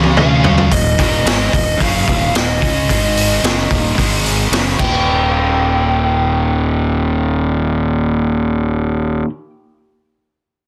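Hard rock at 110 BPM in Eb mixolydian, powerful and anthemic, this clip opens with a drum fill from a raw garage kit, gritty and boomy with a high-tuned snare, joined briefly by a very quiet tonewheel organ with key click and slow rotary speaker and a barely audible sludgy, double-tracked guitar. An overdriven lead guitar with analog delay carries the melody between Eb5 and G5 over two bright stack guitars playing the riff in the background, one with spring reverb, while a growly, punchy fuzz bass sits up front. The drums stop at 4.9 s, leaving the guitars and bass to drive the second section through a dense, heavily limited master with light reverb.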